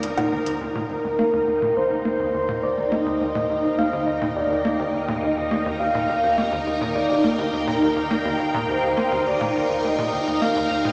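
Drenched in a huge ambient reverb and heard as if through small speakers on a big system in a bare room, this expansive, luminous stretch of sequencer-driven space music begins with electronic hi-hat and woodblock and a very quiet, bubbling stepped-filter texture sounding briefly alongside the other parts, both gone by 0.6 s. Up front, a lush vintage string machine holds sustained chords through phaser and ensemble chorus, while a breathy, flute-like synth lead carries a soft, warbling melody with chorus and tape echo. Beneath them, a tight, punchy sequencer bass drives a plucky riff through lush chorus and echo, and a round sine sub bass sits deep in the background.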